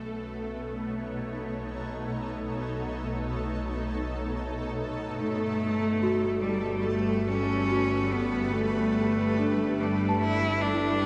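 Ambient music, warm and luminous, at a slow 4/4 pulse, cut from a longer piece and set in a vast, echoing cathedral-like space with a cassette tape character. A shimmering, ethereal pad fades in with detuned sustained chords moving from B7 to Gmaj9, over a dark, floating bowed double bass section that also fades in, while a tense, string-like drone with phaser sits in the background and fades out. At 5.2 seconds a biting, nasal solo cello takes the melody up front with light vibrato and tape echo, and from 6.0 seconds a bell-like, delicate celesta adds sweet ringing arpeggios.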